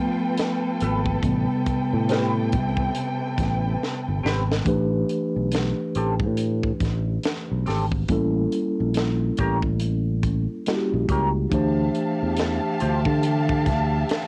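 R&B and neo-soul with a smooth, late-night mood and a swung sixteenth feel, cut from a longer piece and captured on a home cassette recording with little reverb. A mellow, clean tine electric piano takes a solo passage through built-in speakers, alongside distant, lush bowed strings with vibrato and portamento holding sustained chords, while a tight funk kit with a high-tuned snare closes that opening with a fill ending at 4.7 seconds. A punchy fingered bass and a slightly broken-up, lo-fi picked guitar through a small old amp with wah sit up front for most of the piece, and the strings return at 11.5 seconds as the harmony moves to Dm11.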